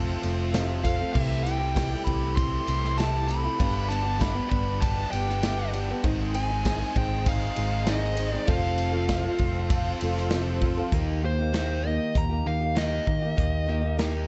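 A jangly, hopeful folk rock and heartland rock excerpt at 98 BPM opens on a boxy acoustic archtop guitar with audible finger squeak, a reedy musette accordion shimmering very quietly beneath, a double-tracked overdriven electric guitar riff in the background, and a round, up-front picked electric bass. A polished country drum kit with a punchy kick and a faint, vintage-sounding tambourine join at 0.2 seconds, and from 0.8 seconds a dark, smooth lead guitar with overdrive and slapback echo carries the melody over chords moving through F, G and Ab. When the accordion stops at 10.9 seconds, the lead guitar takes a solo over an Eb chord in a warm, small-room mix.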